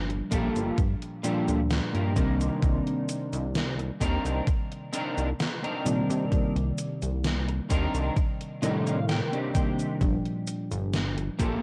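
A twangy, slightly broken-up electric guitar riff sits up front with analog chorus and tape echo in this nostalgic, woozy vaporwave excerpt at 65 BPM, cut from a longer piece, where a round, dark FM electric piano with lush chorus, a glossy pulse-width synth bass, a thumpy electronic kick and an overdriven, gated 80s drum machine of cabasa, hi-hat and snare drift over Gm9 and Cm9 before returning to Gm9 at 10.0 seconds, with a clean electric guitar fill from 8.2 seconds, all captured dry on home cassette.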